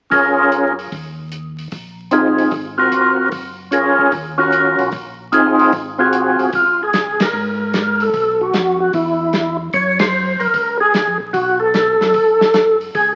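A swinging, greasy soul jazz organ trio groove in Db major at 150 BPM opens at 0.1 s with all three parts together: a percussive tonewheel organ carrying the melody, a second tonewheel organ holding down the bass, and a soul drum kit. The lead organ sits up front with a fat, lightly overdriven tone, its second-harmonic percussion, chorus vibrato and slow rotary speaker giving the tune between C4 and Db5 a warm character. Underneath, the bass organ is mellow, round and clean, with audible key click and its own slow rotary swirl, moving between F1 and Ab2. The drums are dry and dark, with a medium-tuned snare, a tight kick, hi-hat and ride cymbal, and a rolled-off top, swinging the eighths. Moving through chords such as Gbmaj7, Bb7sus4, Ab13 and Gbmaj9, the tune shifts into a second section at 6.5 s, where band accents land at 7.1 and 9.9 seconds. A moderate large-studio reverb and the crackle of a very old 78 rpm record give this cut from a longer piece an aged glow.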